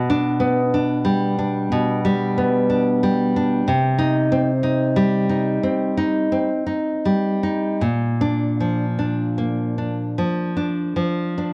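A fingerpicked nylon-string guitar plays alone and up front, its full-bodied, deep classical tone carrying an intimate, melancholic romantic piece at a rubato 50-62 BPM in 4/4. Cut from a longer work and tuned to A4 = 441 Hz, this short passage moves from G/B to Cm at 3.7 seconds and settles on Bb at 7.8 seconds. A moderate recital hall reverb surrounds the guitar, while worn cassette tape adds a warbling pitch drift.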